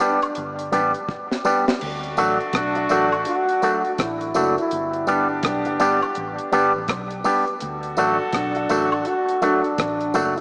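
A wet, lush hall reverb washes over a rough home-demo mix with a small-speaker sound, framing this laid-back, warm roots reggae excerpt cut from a longer piece, where a breathy, close-miked trombone carries the melody with light vibrato and tape echo over a dark, compressed electric guitar with an envelope filter, mellow woody upright piano stabs, and a dry deep drum kit with a high-tuned snare and tight kick. A round, foam-muted vintage electric bass joins at 0.4 seconds, tambourine and woodblock add close percussion, and after a drum fill a distant, roomy horn section enters at 1.8 seconds with a second line as the harmony moves between G and D.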